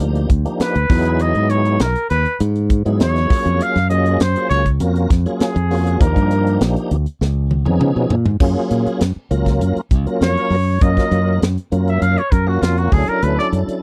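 A tonewheel organ with slow rotary speaker, light overdrive and chorus vibrato opens this funky, dry 1970s-style jazz fusion excerpt at 100 BPM, joined from the start by a bright, punchy fingered electric bass and a tight funk kit with a high-tuned snare. A soaring trumpet solo with soft attack, light vibrato and slapback echo enters at 0.6 seconds, drops out at 6.6 seconds ahead of a drum fill at 7.2 seconds, and returns at 10.2 seconds. Lush major-ninth chords shift between Ebmaj9, Emaj9, Gbmaj9 and Dmaj9, with a brief Db9, while the organ's key click and full tone color the close, intimate sound.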